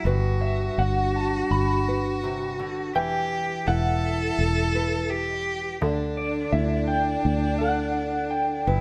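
A straight, unhurried 4/4 pulse carries this nostalgic, tender acoustic folk-pop ballad, cut from a longer piece, as the harmony moves from Gmaj7 to Em to Dadd9. A foam-muted, fingered electric bass sits up front with a round, dark tone, while a small-sounding nylon-string guitar, plucked with the thumb, supplies the accompaniment. From 0.4 s an electric guitar through a small old amp carries the melody in a high register, its picked, compressed tone slightly broken-up and shimmering with tremolo. A single bowed cello plays a rich, focused second line with vibrato. Between 3.7 s and 5.1 s a vibraphone, struck with soft mallets and its motor off, adds mellow, ringing arpeggios in the background, all captured by close, detailed microphones in light reverb.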